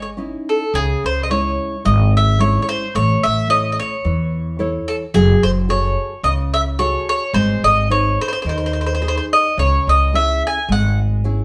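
A lightly swung 4/4 pulse at 109 BPM carries this passionate, wistful Italian folk serenade in C# harmonic minor, tuned slightly low with A4 at 437 Hz. Up front, a bright, picked mandolin sings the melody on its doubled strings between G#4 and G#5, stopping at 11.0 s. A classical nylon-string guitar supports it with warm fingerpicked accompaniment. Also prominent, a growly pizzicato upright bass with a woody tone and steel strings anchors the low end. The harmony moves from C#m through A, F#madd9 and G# before returning to C#m at 9.6 s, all in a moderate studio reverb that gives the feel of a band playing live together in one room, in a short cut from a longer piece.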